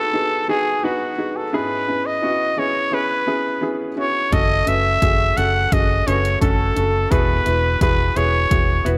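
A raspy, growling trumpet carries the melody over an intimate concert grand piano, its action noise audible, in this bittersweet yet driving piano-driven pop excerpt at 86 BPM in F# dorian, moving through G#m7/D#, C#m7, F#m and Eadd9. At 4.3 seconds a round, foam-muted electric bass and a deep house drum kit with a punchy kick and hi-hat enter beneath them. The bright 1980s-style digital production sets the parts in a moderate plate reverb with small room ambience.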